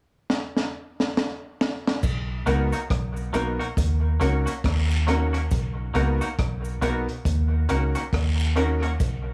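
A laid-back 69 BPM dub reggae groove swung on the sixteenths opens with a crunchy, gritty breakbeat drum fill of punchy kick, high-tuned snare, rim click and dark cymbals. At 2.0 seconds a round, foam-muted electric bass and distant cabasa and guiro with dub echo enter, joined at 2.5 seconds by a bright semi-hollow guitar with subtle chorus and a woody upright piano playing echoing stabs, over Bmaj7 and D#m7 in B major. Everything sits in a small, lightly reverberant room before a brief break at 9.0 seconds ends this spacious fragment of a longer piece.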